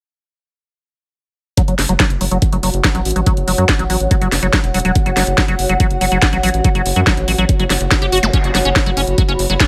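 Driving and hypnotic, this psychedelic trance excerpt in F# minor runs at 142 BPM in a straight 4/4, with the drums arriving at 1.6 seconds: an overdriven, knocking electronic kick sits up front beside a layered kit of cracking snare and bright hats, while from 1.7 seconds a round, deep analog bass with tube saturation anchors the low end. A squelchy, resonant liquid acid bass riff with filter sweeps, chorus, delay and sidechain pumping enters at 1.6 seconds and bubbles above it, and from 2.3 seconds a cloudy, blurred granular pad drifts in with its own reverb and pumping. A brief electronic zap flickers in the background at 8.2 seconds, all set in a light reverb.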